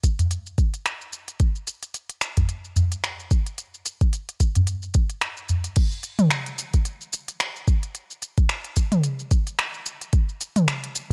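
A dry, gritty cassette-tape sound frames this mystical, hypnotic downtempo groove at 110 BPM with a swung sixteenth-note feel, where a soft, overdriven electronic kick sits up front beside an overdriven electronic kit of crisp hi-hats, crash cymbal, finger snaps, shaker and toms, while a small acoustic udu adds live-room color from 0.2 to 5.6 seconds before the piece moves into a new section at 5.8 seconds.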